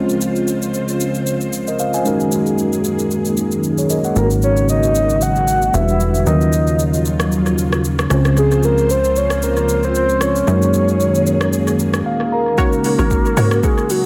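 Late-night and deep, this swung amapiano excerpt at 114 BPM opens with a mellow tine electric piano trailing tape echo over warbling, full-bodied string-machine cellos pumping under sidechain, while an afro-pop kit of deep kick, metallic hats, rim click and shaker ticks along. At 4.2 seconds a round, dark octave-layered synth lead with phaser and vibrato arrives alongside a funky, plucky analog bass. A bright detuned chord stab then flashes in at the 12.6-second mark, followed by a hollow, bouncy log drum bass at 13 seconds, all steeped in an echo-heavy mix.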